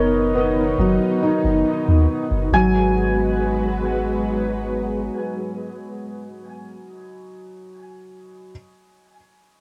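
Brooding and dark, this trip hop excerpt sets a shimmering, hammered santur melody with dub echo over up-front string-machine cellos holding sawtooth chords through ensemble chorus and 12-bit sampler grit, a felt-muted upright piano playing intimate arpeggios with audible action noise and analog delay, and a round, deep 808-style bass with tube saturation that drops out at 5.1 seconds, while the harmony moves from Bmaj7 to G#m7 at 2.5 seconds in a home cassette recording with light reverb.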